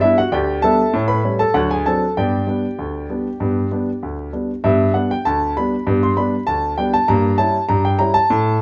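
A straight 2/4 pulse at 98 BPM drives this lively, jaunty ragtime cut in G major, played by a solo grand piano tuned to A4 = 439 Hz that spans D2 to C6 across a short passage taken from a longer piece. The piano sits up front with an intimate, polished tone, long sustain and audible action noise, moving from G through A7 and D7 back to G before a Gdim7 colours the repeat of the opening strain at 7.1 seconds. A moderate club reverb and a layer of vinyl crackle give the sound a club-room, old-record character.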